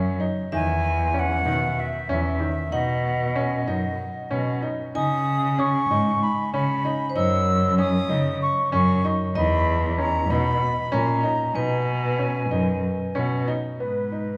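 This is contemporary instrumental chamber music in an uneven 7/8 metre with a straight feel, urgent and hypnotic in mood, taken from a longer piece. A silver concert flute carries the melody throughout, its airy, straight tone and crisp attack sitting at a distance. Beneath it, a brilliant, slightly worn grand piano plays arpeggios, while a single bowed cello supplies the bass with a rich, smooth, even tone and vibrato, set up front. A vibraphone struck with medium hard mallets, motor off, adds a ringing, metallic second line from the background, close-miked and dry, before dropping out at 13.4 s. The ensemble is bathed in a wet concert hall reverb, and the harmony moves through chords such as Emaj7 and B before settling on G#m at 13.8 s.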